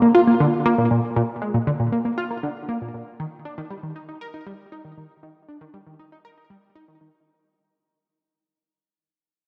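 Mysterious and hypnotic, this brief ambient fragment, cut from a longer piece, features a single tight, sequenced synth playing alone until 7.1 seconds. Its nasal, detuned sawtooth and pulse-wave tone has a plucky filter and sits up front, colored by chorus, delay and a vintage 12-bit sampler grit. A long plate reverb soaks the dreamy mix as the whole passage fades out.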